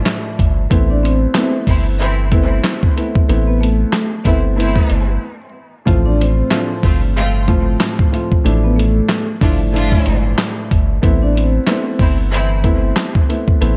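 A gritty, thumpy sampler-style drum kit with handclaps sits up front in this reflective, moody boom-bap hip-hop cut, swinging at 93 BPM in A minor, joined at 0.4 s by a deep, round sub bass while a dark, worn grand piano with audible action noise carries the accompaniment from the start. A mellow vibraphone with soft mallets and motor vibrato takes the melody through analog delay from 0.9 s, and a lush, bowed string section adds focused stabs, all over chords moving from Dmadd9 and Amadd9 to F, with a brief break at 5.2 s. The echo-heavy mix is coated in vinyl crackle, and the clip is cut from a longer piece.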